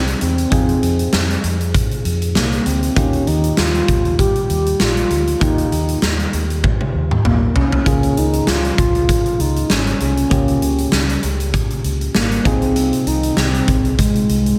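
Glossy and romantic, this 1980s-style pop passage, cut from a longer piece, rides a lightly swung sixteenth-note feel, with a soft, round octave-layered synth lead carrying the melody with chorus and vibrato over a glassy, bell-like FM electric piano tucked in the background with chorus and slapback echo, a dark, foam-muted fingered electric bass, and a huge arena drum kit up front with a boomy kick and a fill at 6.6 seconds, the whole mix set in concert hall reverb for a big arena sound as the chords move from Fm7 through Ebadd9 and Db6 to Ab6.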